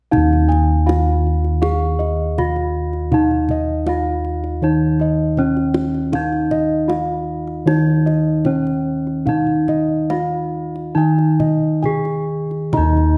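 A moderate recital-hall reverb frames this serene, shimmering Javanese gamelan passage, cut from a longer piece, where an airy, ringing bronze metallophone struck with a wooden mallet carries the melody over round, bronze bossed gongs playing both arpeggios and a deep bass line, while a tight, close and dry kendang keeps the pulse and a mellow second metallophone with shimmering paired-tuning beats adds a brief arpeggio at 12.7 s.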